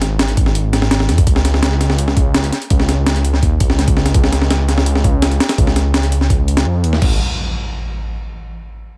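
Atmospheric and nostalgic, this drum and bass and jungle excerpt at 167 BPM pairs a thick, menacing detuned saw bass with a gritty, compressed breakbeat sampler-style drum kit of thumpy kick, high-tuned snare, hi-hat and crash, both up front in a digital ambience, until an electronic impact lands at 7.0 seconds as the bass and drums give way by 7.2 seconds.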